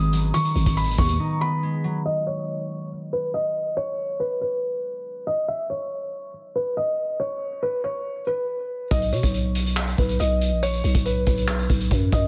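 A soft, felt-muted upright piano carries a dreamy melody over ringing, fingerpicked concert harp and a growling, buzzy 808-style bass, while a vintage drum kit with a punchy kick, hi-hat and handclaps sets a half-time trap pulse at 140 BPM in B major, the chords moving from G#m7 to Bsus2. The bass and drums stop at 1.2 seconds for a break and the harp stops at 4.5 seconds, leaving the intimate piano, with its audible action noise, tape echo and low-pass filter, to ride a long filter sweep until the beat returns at 8.9 seconds with a triumphant lift. Cut from a longer hip hop piece, it has a heavily compressed, radio-like sound with light reverb and small-room ambience, and the drums sound roomy with a rolled-off top.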